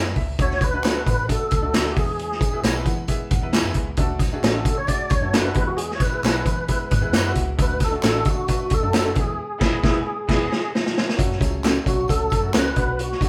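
A fat, lightly overdriven tonewheel organ with key click, chorus vibrato and a slow rotary speaker carries the melody up front in this urgent, driving excerpt of uptempo 1960s-style soul at 133 BPM, moving over alternating D and E chords before breaking into a solo on F#m and Bm at 11.2 s. A tight, dark-cymbaled vintage drum kit and a round, foam-muted fingered bass drive the groove. A woody, slightly detuned upright piano with audible action noise adds a fill at 2.6 s, while clean electric guitar stabs and distant tambourine and handclaps sit in the background. A drum fill arrives at 10.3 s, and the whole band plays live in one room with moderate large studio reverb.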